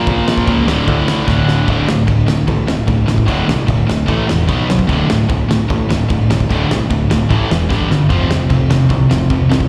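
A loose, up-front acoustic drum kit with a fat snare, boomy kick and dark cymbals in a pumping studio room drives this upbeat, energetic punk rock cut at 149 BPM, with fills at 1.3 and 7.7 seconds. Alongside it sit a growly, direct and amped picked electric bass and two picked guitar riffs in the background: one sludgy and dark with overdrive, the other tight and bright with distortion, both carrying slapback echo. Together they move through power chords from Bb5 and D5 to A5, G5 and F5, captured as a live gig through the venue's PA with recital hall reverb.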